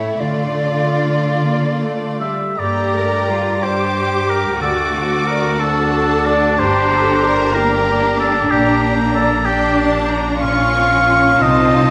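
In a 6/8 with a flexible rubato pulse of about 49 to 64 dotted-quarter beats per minute, this solemn, melancholic slow movement for symphony orchestra unfolds in G minor, cut from a longer piece. The first violins carry the melody high and close with smooth, even vibrato, while the second violins add a focused inner line and the violas fill out a lush accompaniment underneath. A thumb-plucked harp rings with arpeggios in the background, and the cellos supply an expressive bass with soft attacks and portamento. An airy, mellow silver flute opens with a brief second line, which passes at 2.2 seconds to an up-front oboe with a smooth top. At 2.6 seconds a distant double bass section deepens the foundation, as the harmony moves through D7 and Gm/Bb before darkening to B-flat minor and F7/C. A wet scoring-stage reverb lets the sound bloom for nearly two seconds.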